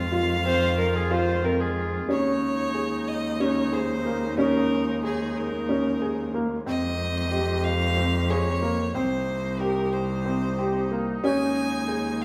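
Set in a lopsided 7/8 with a straight feel, this urgent, hypnotic fragment of contemporary chamber music is driven by a felt-muted upright piano's soft, intimate arpeggios and a dark, veiled con sordino cello bass, bowed up front with portamento. A biting, intense violin carries the melody over punchy sustained chords from a classical-style woodwind section, while a reedy, gut-string viola adds a distant second line from 0.5 to 2.1 seconds. The harmony moves from Fm7 through Eb7sus4, Fm11 and Cm7, all bathed in the wet reverb of a recital hall.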